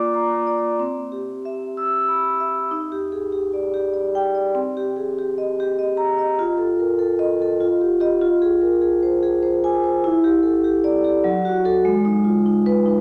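A solo vibraphone played with medium mallets opens this flowing, playful excerpt from a contemporary classical piece in 3/4, its metallic, ringing tone sitting up front with the motor off and moving freely in rubato across a span from F#3 to E6. After a brief opening passage, a new section begins at 2.7 seconds, where the harmony drifts through chords such as Ebmaj7, Cm7 and F7 before turning to more distant colours like Em7, F#m and Abm. A generous scoring-stage reverb lets each struck note bloom into a spacious hall.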